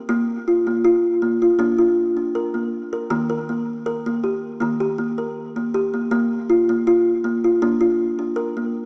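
A straight 4/4 pulse at 80 BPM carries this dreamy, calm fragment of meditative world music in Bb major, tuned to A4 = 439 Hz, where a solo kalimba, woody and hollow with short, soft fingertip plucks placed up front between Eb3 and Bb4, moves from Bb to Eb and back to Bb across 8.9 seconds, its mellow notes trailed by a diffuse ambient delay and set in a wet concert-hall reverb with the small-speaker color of cassette tape.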